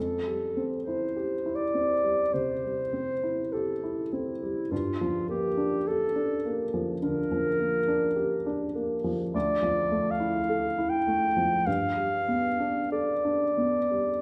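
A wet recital hall reverb with a 1.6-second decay surrounds this intimate, up-front fragment of a longer impressionist classical duo, tuned to A4 = 439 Hz. The mellow clarinet carries a pastoral, dreamy melody in a solo classical style, while the warm baby grand piano accompanies with a natural, short sustain and audible action noise. Both play together throughout the 14.2 seconds at a slow, rubato 51 BPM in 4/4, drifting from Fsus2 through Gm7 and Dmadd9 to G9.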